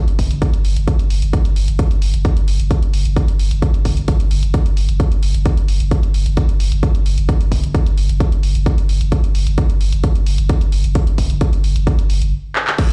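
A heavy, layered electronic kick drum sits up front in this driving, industrial peak-time techno cut at 131 BPM in straight 4/4, taken from a longer piece. Beneath it, a deep, thick sub bass around G1 holds a sustained, fast-attack tone shaped by overdrive, a low-pass filter and sidechain pumping. A dry, punchy analog drum machine adds crash cymbal, handclaps and hi-hat, with the hats and cymbals pumping against a touch of small-room ambience. The whole track carries the feel of a big sound system in a bare room, and near the end the music stops between 12.3 and 12.8 seconds, with a drum fill at 12.6 seconds.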